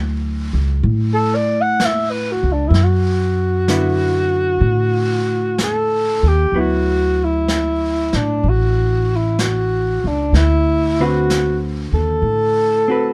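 A breathy, mellow alto saxophone carries the melody from 1.1 seconds, its scooped notes and vibrato sitting up front in a romantic, late-night jazz ballad with a swung feel. Beneath it, a dark, clean hollow-body electric guitar picks the accompaniment and a woody, thumpy pizzicato upright bass holds the low end, while a distant brush kit of snare and hi-hat enters at 0.8 seconds. The harmony rests on D69 before settling to D6 at 10.3 seconds, and the recording stays dry, with little reverb.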